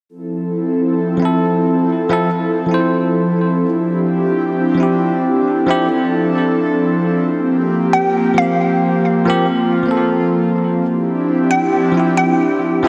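Drenched in a lush hall reverb and pressed into a dense, heavily limited modern master, this future garage fragment drifts at 134 BPM with a 16th-note swing and a melancholic, ghostly mood. An airy, breathy pad with a detuned, chorused shimmer holds sustained chords from Fmaj7 through Dm11 and C7sus4, and a barky, bell-like tine electric piano joins at 1.2 seconds as accompaniment, roughened by vintage 12-bit sampler grit and tape echo. At 7.9 seconds a glassy, crystalline wavetable pluck adds a short, nasal melody high above, colored by chorus and tape echo.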